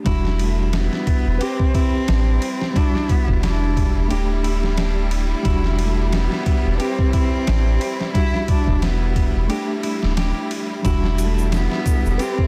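Gritty, pitched-down sampler-style drums with a thumpy kick and an overdriven edge sit up front beside a deep, round dub sub bass in this smoky, brooding trip hop excerpt, where a reedy electric piano with tremolo and tape echo carries the accompaniment, a clear bowed string section holds sustained chords, a rich single cello sings the melody, and a dark, slightly broken-up electric guitar plays arpeggios in the background, joined by a close, dry tube shaker from 10.9 s and a very quiet reversed, dreamy swelling texture at 11.9 s.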